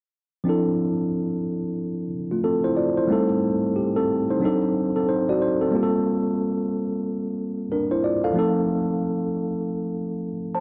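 A lone tine electric piano carries this short R&B excerpt, its worn, slightly out-of-tune voice sitting up front with a light overdrive and the color of built-in speakers. The mood is smooth and late-night, moving at 91 BPM in 4/4 with a 62% swing on the sixteenths in D minor, tuned to A4 = 444 Hz. The piano plays alone from 0.4 to 10.6 seconds, ranging from F3 to A5. Its harmony drifts from Dm9 through Am7b5, D7b9 and Gm11 before settling on F7 at 8.4 seconds. A moderate plate reverb with a 3.5-second tail gives the instrument a lingering halo, and the fragment is clearly cut from a longer piece.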